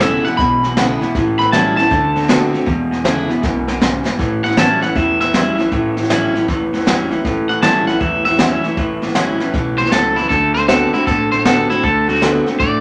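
A swung 4/4 feel at 157 BPM drives this rowdy, upbeat rockabilly cut in A mixolydian, with a brushed jazz kit up front, its high-tuned snare and punchy kick riding over a thumpy, woody upright bass plucked on gut strings in the background. Two picked, twangy electric guitars share the foreground: one through a small old amp plays a low riff, while the other, compressed and slightly broken-up, carries the bright melody, opening with a clean solo over E7, A7 and D7 until a drum fill closes it at 4.2 seconds. A dreadnought steel-string acoustic adds picked accompaniment with audible finger squeak, and a moderate large-studio reverb gives the mix a sense of space.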